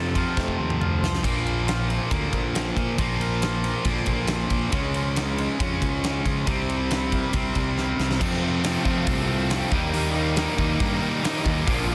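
A dense, heavily limited modern mix with little reverb frames this bittersweet, restless quiet-loud alternative rock cut at 138 BPM, where a huge arena drum kit with a fat snare and punchy kick sits up front beside a bright, picked distorted electric guitar riff and a growly fuzz fingered bass. In the background, a twangy electric guitar plays clean arpeggios through spring reverb and slapback echo until 8.2 seconds. At that point a second overdriven distorted guitar riff enters in the background, along with a very quiet, double-tracked crunchy overdriven guitar and a mellow, vintage organ-string ensemble holding soft sustained chords.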